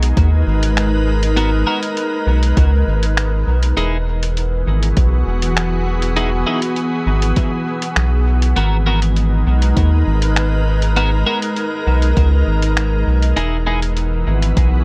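Meditative and spacious, this ambient dub excerpt moves at 100 BPM in a straight 4/4, settled in G# minor and turning between G#m9 and Emaj7 chords. A soft, organ-like additive pad holds sustained chords throughout, its pure, detuned tone thickened by ensemble chorus and its own reverb, with a slow attack and long release that let it evolve gently. Underneath, a round analog bass sits up front with a dark, wave-folded body and fast attack, colored by tube saturation. The rhythm combines a deep, overdriven electronic kick, entering at 0.2 seconds and re-recorded in a large room, with a muffled, pitched-down sampler-style kit of finger snaps and hi-hat. From 1.4 seconds a clean, picked twelve-string electric guitar adds bright, compressed stabs that trail off through dub echo, all within a light digital ambience.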